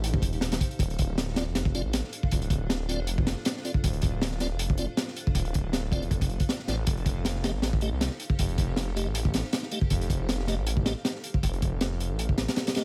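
Dark and atmospheric, this drum and bass excerpt moves at 158 BPM in 4/4 with a light 16th-note swing, rooted in D phrygian. A crunchy breakbeat kit drives it from the first beat, sitting up front with a high-tuned snare, a tight kick and hi-hat, its small-room sound saturated and gritty with a rolled-off top. Beneath it, a thick, menacing detuned saw bass rumbles low, its beating tone pushed through tube saturation and held up front. A tonewheel organ enters at 1.4 seconds, playing piping, scooped stabs in the background, colored by chorus vibrato, key click, a slow rotary speaker, 12-bit sampler grit and dub echo. The harmony shifts from F9 to Dm7 and returns to F9 at 6.9 seconds, all in a dry mix with little reverb.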